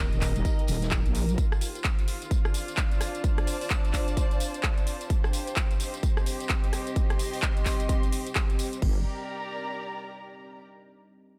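Aggressive and gritty, this bass house cut from a longer piece runs at 129 BPM in G minor with a swung 16th feel, driven by an up-front, punchy electronic kick and a layered big-room kit of metallic hats, claps, rim clicks, tambourine and crash, plus a very quiet, fat, saturated tambourine-and-snare layer that drops out at 1.3 seconds. A heavy, detuned sawtooth wobble bass with overdrive and chorus sounds only briefly at the start and again at 8.8 seconds, while a deep, moody pad with slow attack and long release holds sustained chords, both of them pumping against the kick. Veiled, con sordino bowed strings with vibrato shade the texture through Eb, Dm7 and Cm before the move to Gm, lingering past the drums until 10.6 seconds.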